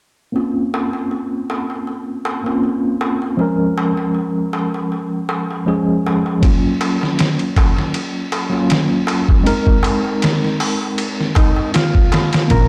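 A clean tine electric piano, up front through a combo amp, carries this dark, melancholic trip hop excerpt from 0.3 seconds, its chords shaded by tremolo, tape echo and a low-pass filter sweep. The piece moves at 79 BPM in 4/4 with a light swing on the sixteenths, cycling through Bbmadd9, Db, Gbmaj7 and Fm7 in Bb minor. A crisp, metal-shelled darbuka sits distant in a large room beneath it, and at 6.4 seconds a compressed, pitched-down sampler-style drum kit arrives with a thumpy kick, medium-tuned snare, hi-hat and ride, overdriven and muffled. A mellow, fingered electric guitar slips in a dark, clean melody at 11.4 seconds, and a woody pizzicato upright bass lands on a single low note just before the cut. Moderate spring reverb and a dark, warm production give the whole a hazy, late-night weight.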